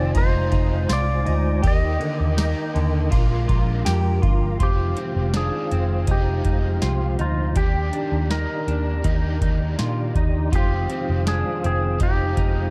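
Ethereal and dreamy, this dream pop excerpt moves at 81 BPM in a straight 4/4 over a dark, warm production with little reverb, cycling through Fm7, Ebmaj7 and Bb7 before settling between Fm7 and Ebmaj7 after 4.6 seconds. A bright, twangy lap steel carries the melody with slide and volume swells through digital delay, while a picked clean electric guitar adds arpeggios through ensemble chorus and delay, a hollow-bodied overdriven semi-hollow guitar accompanies with harmonic tremolo and analog chorus, and a soft, flute-like tonewheel organ holds chords through chorus vibrato and a slow rotary speaker. Underneath, a round, foam-muted vintage bass sits up front beside a booming analog drum machine with deep kick, crisp snare, metallic hats, ride and tambourine, re-recorded in a small room.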